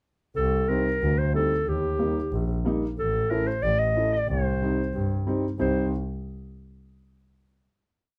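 A mellow clarinet leads this brief, soulful klezmer piece with an ornamented modal melody in a classical style, over a bowed, veiled double bass playing root and fifth on the main beats and a dark, woody upright piano with audible action noise placing off-beat triads, all in light reverb before a final chord at 5.6 seconds.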